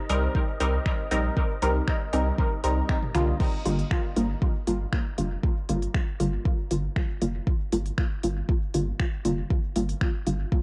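A deep, up-front electronic kick anchors this nocturnal, cavernous dub techno cut, a short section from a longer piece at 118 BPM in G minor, with a soft, round sub bass carrying transformer saturation and a muted, detuned sawtooth chord stab that moves from Cm7 to Gm7 through chorus, phaser, dub echo and cassette tape colour, its filter sweeping from 3.4 seconds onward. Both bass and stab carry sidechain pumping. Underneath, a deep house kit of smooth hi-hats, finger snaps and crash cymbal trails dub echo, while a very quiet, tape-warm electronic woodblock and toms and a dark, breathy wind-like noise texture in the background drop out by about 3.4 seconds, all within light digital ambience and a homemade cassette sound.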